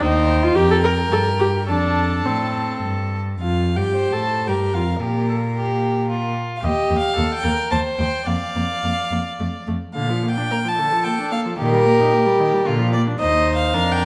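A close first violin carries the melody between Bb4 and A5, its airy bow and gut-string tone giving this spirited, lively quick movement for string quartet its character. The piece is in the classical-period style, in Bb major and 3/4 at 110 BPM, with a rubato feel, and all four players use period-style gut strings. Beneath the tune, the second violin plays a distant line with light vibrato, while a close viola, nasal and reedy, fills in the accompaniment. The cello sits up front with a rich bass tone. The harmony moves through chords such as Cm/Eb, F, Bb and Eb, with a new section starting at 3.4 seconds, and the whole passage is set in a wet recital hall reverb and cut from a longer piece.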